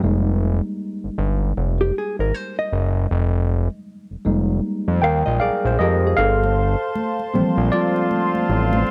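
Swung sixteenths at a slow 78 BPM in 4/4 carry this soulful, introspective neo-soul R&B excerpt in G phrygian, where a worn, slightly out-of-tune tine electric piano through a combo amp takes the lead over a fat, saturated analog bass sitting up front, a dark, clean hollow-body jazz guitar adds a second line from 1.8 s, the harmony moves from Fm11 to Gm11 as an airy, flute-like pad with chorus and bright, high-tuned congas arrive at 6.2 s, and tight, vintage horn stabs with light vibrato join at 7.7 s, all set in light reverb and studio ambience.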